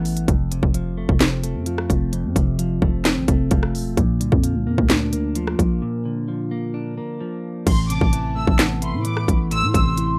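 Up-front trap drums drive this dark, eerie half-time hip hop excerpt, with a hard-clipped kick, sharp snare, crisp hi-hats, handclaps, rim clicks and crash cymbal, while a growling, buzzy 808-style bass with a fast attack and decaying tail sits beneath. A clean, compressed electric guitar with phaser plays fingered accompaniment over F and Bb chords, and after a break from 5.8 seconds the music shifts to Amadd9. At 7.7 seconds a distant, lush bowed violin section enters with vibrato and portamento, joined at 7.9 seconds by an airy, mellow jazz flute, both carrying slapback echo in a lightly reverberant, rough home-demo mix.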